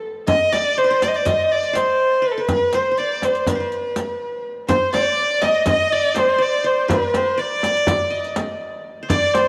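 Hypnotic and longing, this Turkish makam ensemble piece moves in a straight 9/8 and is cut from a longer work. A solo bowed violin carries the melody up front, its focused tone shaded with vibrato and trailed by tape echo. Behind it, a bright-edged qanun played with fingerpicks adds a second line in the background. From 0.3 s, a deep frame drum struck with soft hands and a riq with dark jingles under hard hands keep the rhythm. At 4.7 s, a chamber violin section joins in the background with a reedy, gut-string, period-style sound and light vibrato, all set in a wet plate reverb.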